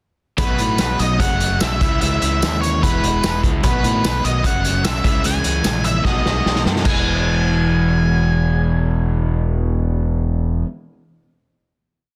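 An octave-fuzz lead guitar leads this short indie rock piece, its dark, distorted tone playing hook-like motif phrases through a digital delay. Beneath it, a double-tracked, overdriven electric guitar sits up front with bright, picked, ringing chords, while a fingered electric bass adds a growly, punchy drive in eighth notes. A vintage acoustic drum kit plays a 60s soul groove with a boomy kick, a medium-tuned snare, hi-hat, crash cymbal and tambourine, its sound pumping in a small room with a rolled-off top. The wistful yet upbeat pre-chorus cycles through its chords to a drum fill at 6.1 seconds, after which the kit stops at 6.9 seconds and the guitars and bass close the piece on a final E chord section lasting until 10.1 seconds. Studio reverb and a dense, heavily limited modern master frame the piece.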